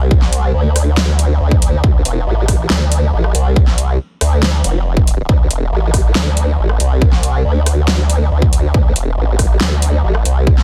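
A saturated formant-filtered wobble bass anchors this aggressive, heavy half-time dubstep from the first moment, its detuned pulse and sine tones thickened with chorus and overdrive and sitting up front between E1 and D2. A punchy, tape-warm electronic kick joins at 0.1 s, and at 0.2 s a layered kit adds a huge snare, metallic hi-hats and rim clicks a little further back in the mix. The sound is dry and tightly packed, with a dense, heavily limited modern master.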